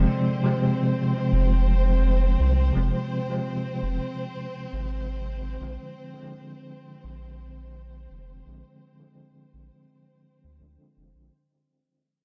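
A bell-like tine electric piano, bright and up front with tremolo, tape echo, 12-bit sampler grit and a filter sweep, accompanies this smoky, melancholic trip hop excerpt at 84 BPM over Fm and Bb7, alongside a deep, round analog bass and a softer bowed violin section holding sustained, expressive chords with vibrato and gritty sampler texture, all in light reverb as the fade-out runs through its 11.3 seconds.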